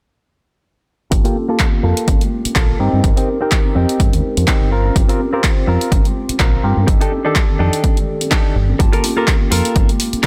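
A dry, gritty slice of filtered disco house, cut from a longer piece, with a filter sweep running from 1.1 to 10.3 seconds and a sensual, swinging groove over a progression that moves from Gm9 through F13/G and back to Gm9. An overdriven, punchy electronic kick sits up front, joined by an analog drum machine's handclaps and pumping hi-hats, while bright maracas and congas linger distantly in the background. A dark, round fingered bass, a worn and slightly out-of-tune tine electric piano with phaser and 12-bit sampler crunch, and a clean, compressed, direct-recorded guitar riff all pump against the kick under a low-pass filter.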